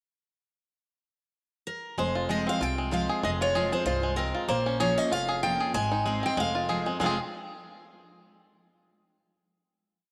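A bright, up-front dreadnought guitar picks a motif-based melody in sentence-like phrases from 1.7 s in this haunting, driving F minor bluegrass piece at 191 BPM with a light swing, joined at 2.0 s by an equally forward, twangy banjo rolling three-finger arpeggios with fingerpicks through a slapback echo, a second full-bodied guitar with fresh strings and audible finger squeak alternating bass notes and strums with bass runs, and a woody, thumpy upright bass playing two-beat root and fifth, the ensemble sitting in a moderate plate reverb before closing on a final chord.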